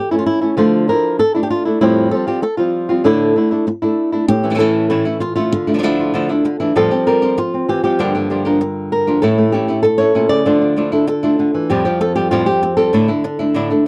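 A fingerpicked flamenco guitar carries a mournful, dramatic melody up front at 194 BPM in straight 4/4, joined at 4.3 seconds by a second boxy, fingerpicked guitar playing stabs with audible finger squeak, moving through A, Dmadd9 and Fadd9 toward Asus4 and Gm7 in a dry, close 1970s-style studio sound with light reverb, cut from a longer piece.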